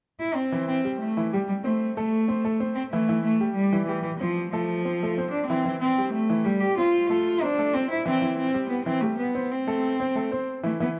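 A rich, earthy bowed cello carries a festive, sunny Latin melody at a brisk 187 BPM in C major, backed by a bright, woody upright piano with audible action noise that enters at 0.5 seconds, moving through C, Am and F chords in a dark production bathed in a moderate plate reverb.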